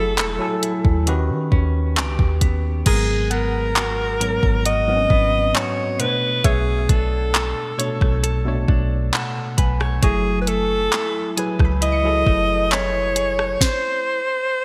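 A bright, 1980s-style digital production with light reverb frames this moody, longing contemporary R&B passage, cut from a longer piece and moving at a slow 67 BPM in a straight 4/4. Up front, an alto saxophone carries the melody in a smooth jazz style, its vibrato and scooped notes trailed by delay, while a worn, slightly out-of-tune tine electric piano, lightly overdriven as if through built-in speakers, supplies the chords and adds a short fill at 8.7 seconds. A clean, compressed electric guitar recorded direct picks arpeggios through lush chorus and delay, and a deep, round, sine-like 808-style bass anchors the low end with dark, decaying notes. The produced electronic drum kit sits forward, pairing a soft kick and sharp snare with handclaps, rim clicks, hi-hat and crash under a gated reverb. From 3.3 seconds a glassy, crystalline wavetable pluck with a noise layer and filter sweep glints in the background, as the harmony drifts through F#m9, G#m9 and Bm9 before the accompaniment drops away at 13.6 seconds.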